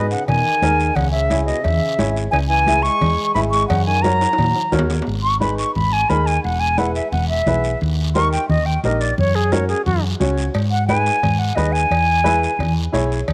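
An airy, vibrato-laden concert flute leads from the start over a punchy trombone second line, a woody, slightly detuned upright piano and a round hollow-body electric bass up front, with raspy guiro, plus high-tuned congas and ringing cowbell and timbales behind, in this danceable, driving cumbia fragment, where the trombone drops out at 4.7 seconds, a drum fill launches the flute solo at 5.1 seconds, and the cowbell and timbales return at 10.5 seconds in a small, lightly reverberant room.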